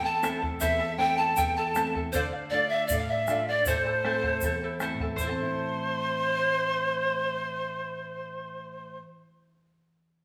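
Pan flute carries an unsteady, vibrato-laden melody with a crisp, chiffy attack up front over a breathy cane quena second line, shimmering double-strung charango, thumb-plucked classical nylon-string guitar, round bombo and grainy egg shaker, all in a wet stone room in this melancholic, earthy Andean folk excerpt in A minor at 79 BPM, where the bombo and shaker stop at 5.5 seconds.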